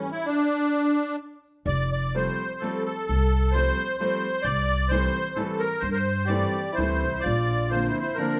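Heard through a wet large-studio reverb with the band playing live in one room, this nostalgic, whirling musette waltz in F major at 128 BPM, in 3/4 with a rubato feel, puts a reedy, shimmering musette accordion up front on the melody over bright, woody upright piano accompaniment; a growly, pizzicato upright bass with steel strings joins at 1.7 s, and a breathy, close-miked soprano saxophone adds a jazz-style second line with vibrato and scooped notes from 6.2 s as the harmony moves through Fadd9, C6 and Bbadd9.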